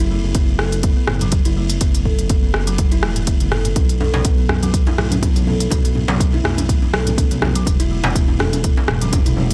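Afro house at 123 BPM with a spiritual, hypnotic mood, built on a buzzing, woody kalimba playing arpeggios with tape echo and a smooth, gliding, wave-folded synth bass, both pumping with sidechain, joined at 0.3 seconds by an up-front deep electronic kick and an afro-pop drum kit of crisp hi-hats, rim clicks and toms, then after a drum fill, by a distant, bright conga and a saturated djembe in the background at 3.8 seconds, all over F#m7, B5 and E5 chords in a dry mix.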